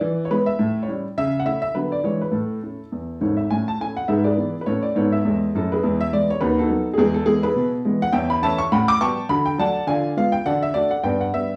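Stride jazz at a brisk 207 BPM in 4/4 with a light swing, this playful fragment is carried by a solo grand piano heard from 0.0 to 11.5 seconds, its tone dark, worn and a little boxy, with short sustain and audible action noise that make it feel close and intimate. The piano sits up front in a moderate club reverb, spanning deep bass to high upper notes as the harmony moves through A major before turning toward D major from about 8.1 seconds, passing through rich chords such as an A13 and a diminished seventh along the way.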